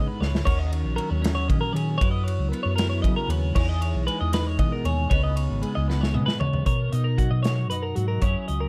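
Math rock and midwest emo in a lilting 6/8, this playful, intricate snippet pairs a chorus-drenched twelve-string electric guitar playing jazzy seventh and suspended chords with a second twangy, bright twelve-string picking high arpeggios, while a round, dark hollow-body bass sits underneath and a tight, polished acoustic kit with bright cymbals rolls through a fill from 5.9 to 6.7 seconds before everything opens onto a Bmaj9 at 6.7 seconds, all in a dry, dusky mix.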